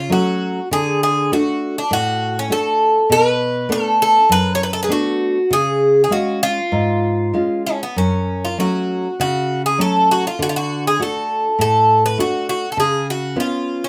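A moderate studio reverb gives this close, up-front 13.9-second fragment of a longer piece a sense of room, as a bright, metallic Irish bouzouki with double strings carries the melody over a full-bodied, fingerpicked nylon-string guitar. The mood is a longing, mournful fado-style ballad in F# harmonic minor, moving at 100 BPM in 4/4 with a rubato feel and tuned to A4 = 439 Hz. The guitar's deep classical accompaniment moves through F#m, D, Bm7 and C#, closing on C#7 at 12.8 seconds.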